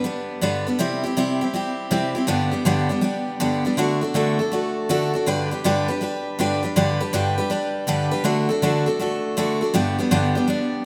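A bright, full-bodied steel-string acoustic guitar sits up front, picked alone through a heartfelt, easygoing country passage in G major at 161 BPM with a swung eighth-note feel. Across this short 10.8-second cut from a longer piece, the guitar ranges from G2 to B4, moving between G, C and D chords, and a lush hall reverb gives a roomy glow to an otherwise rough home demo sound.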